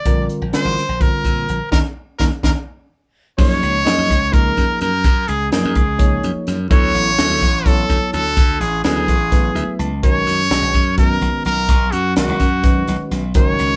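In a straight 7/8 at 253 BPM, this bright, soaring electric jazz fusion passage, cut from a longer piece, puts a brilliant, forceful solo trumpet up front with light vibrato and scooped notes over bell-like tine electric piano chords, glassy, punchy slap bass and a crisp acoustic drum kit with a high-tuned snare, while a band accent from 1.7 s and a drum fill from 2.0 s carry the music from Eb major into F# major at 3.4 s, the electric piano adding fills along the way, all set in a live room with light reverb.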